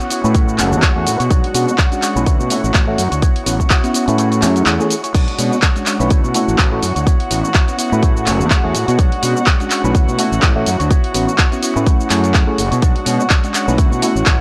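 A swung 125 BPM groove in 4/4 drives this sensual, groovy excerpt of filtered disco house in B dorian, with a punchy, up-front electronic kick that drops out from 4.2 to 5.1 seconds, and an analog drum machine supplying cabasa, handclaps, hi-hat and crash under sidechain pumping. A fuzzy, overdriven fingered bass enters at 0.2 seconds beneath a bright, reedy electric piano with phaser and overdrive, a dark, clean envelope-filtered guitar riff, and biting, intense violin chords with light vibrato, all four pumping and low-pass filtered. The chords cycle through F#m9, Bm69, Dmaj9 and A69 in a dry, gritty mix with digital ambience.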